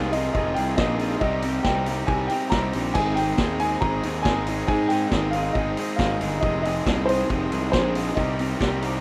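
A dark, woody upright piano carries the melody with tape echo in this upbeat yet wistful indie rock excerpt. Beneath it, a biting overdriven guitar and a lo-fi, slightly broken-up guitar with subtle chorus and tape echo play riffs. A round fuzz bass and a vintage drum kit with dark cymbals, a tight kick and a medium-tuned snare fill out the straight 4/4 feel over Fm7, Cm and Ab chords, all in a rough home demo mix with small room ambience.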